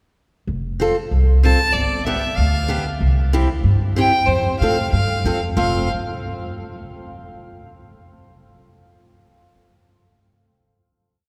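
A woody, growly pizzicato upright bass opens this short, jolly alpine folk dance at 0.5 s, sitting up front with root-and-fifth notes on the main beats of a bouncy 2/4 at 94 BPM in F major. A picked steel-string acoustic guitar joins with off-beat triad chords, and at 1.4 s a clear, focused fiddle enters up front, bowing a song-like motif melody with light vibrato over an F, G, C, F progression. The whole dance band sounds as if it is playing in a church or concert hall, with a long cathedral reverb trailing into the final chord at 5.6 s.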